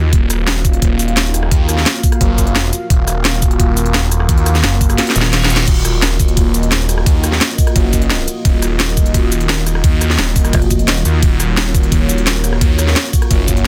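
Mechanical and dark, this excerpt of technical drum and bass rides a swirling, saturated saw bass with phaser and overdrive over a deep, moody analog pad whose chorused chords pump against the beat. Up front, a layered electronic kit brings a cracking snare, crisp hi-hats, ride, crash, rim click and shaker, while a knocking electronic kick anchors the groove. At 5.0 seconds the kick drops out for a drum fill, with a background reverse cymbal and a heavy, pulsing wobble bass arriving at 5.2 seconds; the wobble bass returns at 10.5 seconds, all within a dense, heavily limited digital mix.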